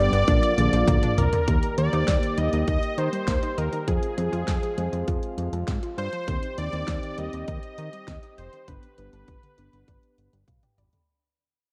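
Wistful yet upbeat synth-pop at 100 BPM in Eb major, this short cut from a longer piece sets a bold, bright detuned sawtooth unison lead up front over a fat analog bass with a filter sweep and a punchy, layered electronic pop drum kit. A mellow tine electric piano with phaser and a lush unison pluck playing arpeggios through analog delay sit in the background, while a softly attacked French horn section with light vibrato holds sustained chords. The harmony moves from Bb through Eb, Fm, Cm/Eb and G, with drum fills at 0.3 and 9.9 seconds, an electric piano fill at 10.2 seconds, and a fade-out from 1.5 seconds in a dark production with light reverb.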